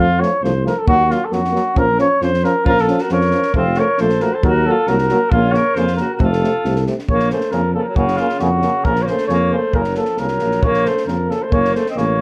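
A mellow flugelhorn carries the melody up front in this fiery, restless Balkan brass band piece, its light vibrato sounding distant and roomy in a classical style. A dark, close-miked tuba holds down the bass in 2/4, while a clear trombone with a light vibrato and a warm euphonium sit in the background as accompaniment. A compact cocktail drum kit enters at 0.2 s with a punchy kick and a high-tuned snare, its acoustic sound smooth and shadowy in a small room. At 2.6 s an alto saxophone with vibrato adds a second line, also heard at a remove with plenty of space around it. Around 7.1 s the harmony moves from F, Ebm and Bbm to a passage alternating Bbm and Gb, and a moderate reverb binds the band together in this fragment cut from a longer piece.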